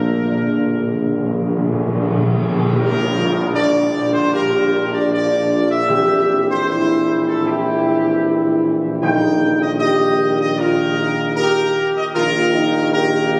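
Captured on a phone in a wet cathedral-like space, this solemn, majestic excerpt of a classical ceremonial fanfare opens with a close, dry timpani fill beneath the full ensemble. A band accent at 2.7 s brings in a dark tam-tam in the background. Warm trumpets lead the melody up front over mellow sustained French horn chords, punchy trombone chords set further back and a close-miked tuba bass line, all with light vibrato, continuing to the end after the timpani drop out at 10.2 s.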